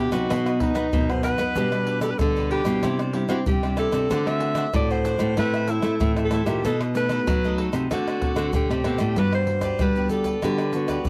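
A lightly reverberant home cassette recording captures a playful, sunny samba and choro fragment cut from a longer piece. Up front, a breathy alto saxophone sings a jazz-style solo melody with vibrato, subtone and scooped notes, over a crisp, bright picked cavaquinho and a fingerpicked classical nylon-string guitar with audible finger squeak, both colored by cassette tape, while a second, dark, full-bodied nylon-string guitar carries the bass line through tube saturation. From 0.1 seconds an egg shaker, pandeiro, tamborim and tight surdo join, played close with hard hands, as the harmony moves from B through D7 and B7 before settling on Gmaj7 at 9.2 seconds.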